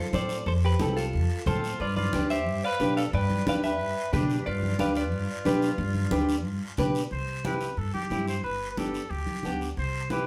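Festive and sunny, this cumbia fragment, cut from a longer piece, moves with a straight four-beat feel. A bright, twangy clean electric guitar, recorded direct and compressed with a touch of spring reverb, carries the picked melody until 6.7 seconds. A small, fingerpicked nylon-string guitar sits up front with the accompaniment, while a woody pizzicato upright bass with steel strings anchors the low end. Thick-skinned, medium-tuned congas and a raspy, close guiro fill out the percussion. A clear trumpet enters at 1.5 seconds on a second line, then takes a punchy, vintage pop-style solo with light vibrato from 7.1 seconds. The ensemble is heard from further back in a wet studio reverb.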